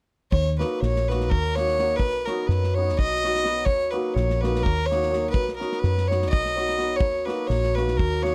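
A biting, nasal fiddle leads this fiery, virtuosic Balkan wedding-band piece, bowed by a single player up front and carrying the melody from 0.3 seconds in a tight range between Bb4 and D#5. Set in Eb minor with a slightly low tuning of A4 = 437 Hz, it runs at 252 BPM counted in eighths across an asymmetric 7/8 metre with a straight feel, alternating between Eb minor and B chords. A dark, round fingered electric bass with a foam-muted, punchy tone sits close beside the fiddle, while an acoustic drum kit with a punchy kick and a medium-tuned snare keeps time from a small room. A shimmering, ringing hammered dulcimer joins at 0.6 seconds, filling in the accompaniment beneath the lead. The sound is dry and close, like a 1970s studio session, and this short cut is taken from a longer piece.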